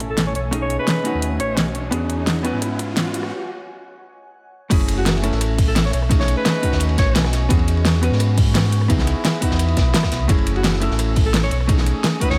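Liquid drum and bass at 172 BPM in F# dorian, soulful and dreamy, where a dark, hollow-body jazz guitar with dub echo and a glassy, ethereal FM pad with sidechain pumping drift over a deep sine sub bass, a punchy layered electronic kick and a pop kit with a fat snare and metallic hats. A background riser from 1.0 to 3.3 s leads into a short break, then at 4.7 s a gritty, saturated breakbeat kit with dark cymbals joins for the drop. A smooth alto saxophone with vibrato, low-pass filtering and digital delay sings brief phrases over chords moving through F#m9, B13 and E69.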